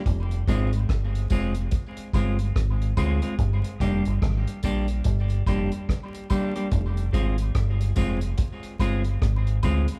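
Laid-back and serious, this short cut from a longer roots reggae piece moves at 72 BPM in F dorian with a swung 16th-note feel, where a deep, round fingered electric bass and a cloth-damped, thuddy drum kit with a tight kick, hi-hat and rim click sit up front, a clean picked electric guitar with warbly pitch drift and dub echo plays over Fm and Gm chords, and a faint tambourine and woodblock with dub echo trails in the background, all played live in one room under a large studio reverb and a layer of vinyl crackle.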